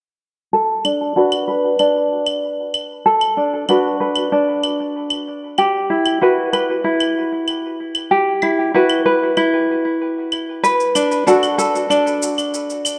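Folktronica in B minor at 95 BPM, this wistful, delicate fragment of a longer piece opens at 0.5 seconds with a light, fingerpicked tenor ukulele playing arpeggios up front through a low-pass filter and delay, with a filter sweep running across its whole length. Electronic claves and shaker join at 0.8 seconds, their tape-warm, produced tone re-recorded in a large room. The ukulele moves from Bm7 to Emadd9 and back to Bm7, and a lush plate reverb soaks the mix in a dreamy haze.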